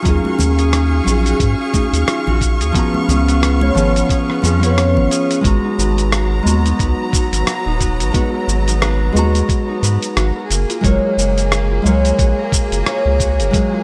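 A lightly reverberant small-room sound gives this blissful, smooth sunset chillout excerpt an intimate glow, with a deep, round analog bass sitting up front. At 89 BPM in 4/4 with a gentle 16th-note swing, a gritty, compressed sampler-style soul kit of cabasa, hi-hat and rim click rides over a thumpy, tape-warm electronic kick. A full-bodied, fingerpicked nylon-string guitar carries the accompaniment through a tape echo, while a ringing concert harp spins arpeggios through the same echo. A rich, bowed studio string section holds focused, vibrato-laden chords beneath, moving from D#m11 and C#7 to G#m9 at 5.4 seconds and F#maj9 at 10.5 seconds. Close, dry congas played with hard hands sit in the background before dropping out at 5.1 seconds.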